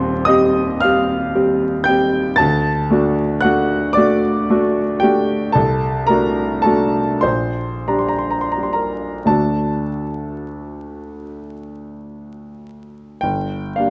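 This is a romantic classical nocturne for solo piano, wistful and yearning, with an unhurried rubato flow in 6/8 metre. A warm grand piano plays alone for the full 13.9 seconds, sitting present and up front. Its range stretches from Eb1 in the deep bass to A6 high in the treble. The harmony passes through C minor over Eb, D, D7 over C and G minor over Bb before settling on G minor at 13.2 seconds. Close, detailed microphones catch the instrument in a recital hall with moderate reverb, while a vinyl crackle lends an aged patina. The passage is cut from a longer piece.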